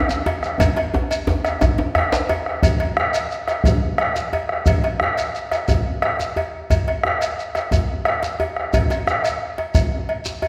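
Festive and powerful, this West African traditional drum ensemble piece in 12/8 is cut from a longer performance, with a cracking, tight djembe carrying metal rattles that opens the piece and drops out at 2.3 seconds. A grainy shekere enters almost at once, and a second, warm djembe soon joins a dark, deep bombo and a metallic cowbell, while a drum fill from 0.6 seconds leads into a new section at 2.6 seconds. The bombo and the warm djembe sit up front, the whole ensemble is bathed in a wet scoring-stage reverb, and the cowbell and shekere carry a smaller-room sound.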